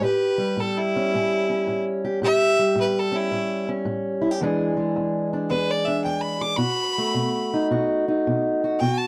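A biting, clear fiddle with light vibrato carries the melody up front over a dark, boxy fingerpicked steel-string parlour guitar in this swaggering, laid-back acoustic country blues, swung in 4/4 through A7, E7 and B7 in a dry, close 1970s-style studio sound, cut from a longer piece.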